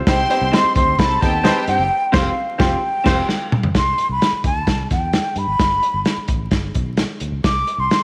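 Light small-room reverb and a haze of vinyl crackle frame this short cut from an uptempo 1960s-style soul tune at 130 BPM in a straight 4/4, danceable and warm in mood. A crunchy breakbeat kit sits up front with a tight kick, medium-tuned snare, dark cymbals, hi-hat, crash and toms, its saturated, gritty tone rolled off at the top. Beneath it, a fingered electric bass with a round, foam-muted sound holds the low end. Over them a breathy concert flute carries the melody with vibrato, tongued notes and lifted highs, expressive and close. The opening bars are busy: a woody upright piano, a lush, bowed string section heard at a distance, and a compressed guitar riff through a small old amp all come in together, twangy guitar stabs with tremolo join at 0.5 seconds, and a bright saxophone section with vibrato adds a very quiet second line from 1.2 seconds. The chords move from Cm to Fsus2, where the band hits an accent and a drum fill leads into a second section on C6 and G at 3.7 seconds, by which point the flute, drums and bass carry on alone.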